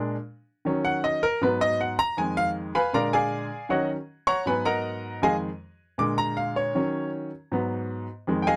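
Jazz in E-flat minor at a brisk 158 BPM, this short excerpt from a longer piece has a driving, fiery mood in a straight 4/4 feel. A clear baby grand piano plays alone for the full 8.6 seconds, ranging from F2 up to D6. Its tone is natural and up front, with a short sustain that keeps each chord crisp. The harmony cycles quickly through minor-key changes, moving among Bb7, Ebm7, Abm7 and Fm7b5, with an Abm9 and an Fm7 adding color along the way. Light reverb gives the room a touch of space around the instrument.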